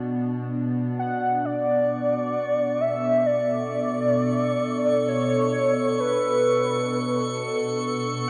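A velvety, full-bodied synth lead with vibrato carries a melody from 1.0 seconds over a warbly, nostalgic tape-like pad of sustained Bm and Bm7 chords, while a faint, glassy harmonics texture drifts in at 2.2 seconds, forming a serene, reflective ambient passage in free time and B minor, cut from a longer piece and set in a huge, wet reverb.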